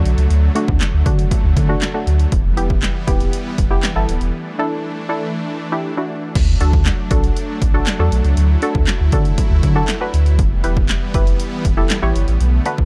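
A dark, dry mix sets this summery, carefree dance-pop excerpt in D major at 119 BPM. A deep, full sub bass with an octave sits up front beside a punchy analog drum machine, whose kick, snare, handclaps, hi-hat and crash enter at 0.1 seconds, with a short room on the snare, claps and hats. A crisp, mellow wavetable chord stab with a plucked filter and a lush, detuned supersaw pad ride the sidechain pumping alongside the bass through chords of D, Em and Dsus2, with a break from 4.3 to 6.4 seconds before the opening phrase returns.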